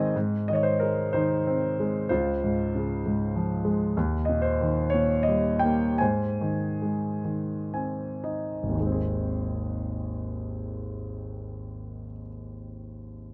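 A polished, present grand piano plays alone in this calm classical passage, a lyrical solo in Ab major and 6/8 that moves with free rubato at roughly 36-66 BPM in dotted quarters, spanning Ab1 to Ab5. Its harmony moves from Ab through Db and Eb back to Ab, slowing from 4.0 s and closing its opening section with a fill that leads into a new section at 8.8 s. Close, detailed miking and light reverb keep the warm tone up front in this short passage taken from a longer piece.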